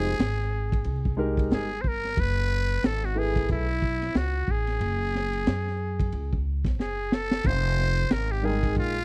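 A swung 4/4 groove at 91 BPM drives this smoky, cool jazz-hop excerpt, set by a crunchy breakbeat kit with a tight kick, a high-tuned snare, dark cymbals across hi-hat and ride, and a saturated, gritty, rolled-off tone, plus a drum fill at 6.8 seconds. Beneath it, an upright bass sits up front, its pizzicato notes woody and thumpy. A dark grand piano opens with mellow, long-sustained harmony over a rootless Fm11 moving to Gbmadd9, falls away at 3.6 seconds and returns briefly at 8.4 seconds. Carrying the melody throughout is a solo trumpet with a metal mute, buzzy, thin and raspy, with vibrato, breathy growls and a smooth top to its jazz phrasing. The whole track has a dry, close 1970s-style studio sound with little reverb, and vinyl crackle runs underneath.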